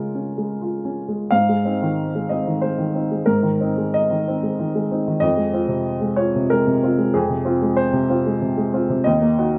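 A lone upright piano opens the recording, its woody tone placed up front and intimate, as if the listener sits beside the instrument. The style is neoclassical minimalist piano in a gently rubato triple metre, carrying a melancholic, inward mood. After a brief opening gesture on a Db6 chord, a new passage begins at 1.3 s on Abadd9, then settles onto F minor at 5.2 s before turning to E-flat minor near the end. The playing spans from deep bass notes up into the upper middle of the keyboard, giving the harmonies a full yet warm body. A light reverb adds a soft sense of space, and the fragment, cut from a longer piece, stops at 9.6 s.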